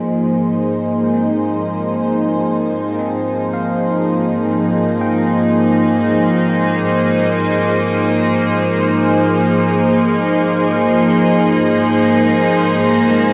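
Serene and weightless, this ambient excerpt drifts in free time, tuned to A4 = 438 Hz. An evolving wavetable pad sits up front for the full 13.3 seconds, holding sustained chords with a slow attack and long release, its detuned unison blend of triangle and sine tones morphing gently under chorus, built-in reverb and a shimmer reverb. Beneath it, a bright, distant symphonic cello section bows a single low Ab with light vibrato, fading in across the whole passage with an intense ensemble tone. From 1.0 seconds, a very quiet tine electric piano adds clean, bell-like arpeggios. The harmony moves from Ab69 to Bbsus2 over an Ab bass at 3.1 seconds, then returns to Ab69 at 10.9 seconds, all set in a dreamy mix soaked in a long plate reverb.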